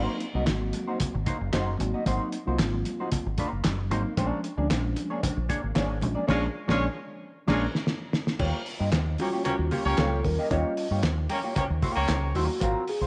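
Funk at 114 BPM in a straight 4/4, this short, energetic and playful cut moves from an Ab9 to a Bb7#9 and lands on Eb9 at 8.4 seconds. A dark, clean hollow-body jazz guitar runs through a wah as accompaniment, while a mellow tine electric piano punches out stabs and then takes a solo from 8.4 seconds to the end. Underneath, a deep dub fingered bass sits round and up front, and a cloth-damped, thuddy drum kit brings a muffled, gritty, saturated sound with a fat snare, tight kick, dark cymbals, handclaps and hi-hat. Very quiet congas with a thick skin add colour, and a distant metallic cowbell joins at 4.2 seconds. A clear, vintage horn section with light vibrato and octave doubling plays a loose second line from 6.3 seconds, as a drum fill and a band accent push into the solo. Light reverb and a small room ambience surround the whole, and the mix tops out around 10.7 kHz.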